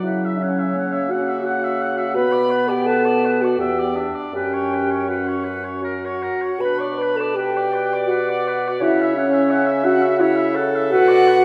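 Heard from further back in a reverberant recital hall, this short cut from a longer classical work is a slow, romantic movement for wind quintet in B minor, moving in a rubato 3/4 at roughly 78-86 BPM with a melancholic, yearning mood. An airy, close-miked flute carries the expressive melody with vibrato and a soft attack, while the oboe adds a clear, distant second line with its own vibrato, and the clarinet and a mellow, roomy French horn, the most prominent voice in the blend, supply the accompaniment. A bassoon enters at 0.1 s to hold the bass, and the harmony comes back to rest on B minor at 10.9 s.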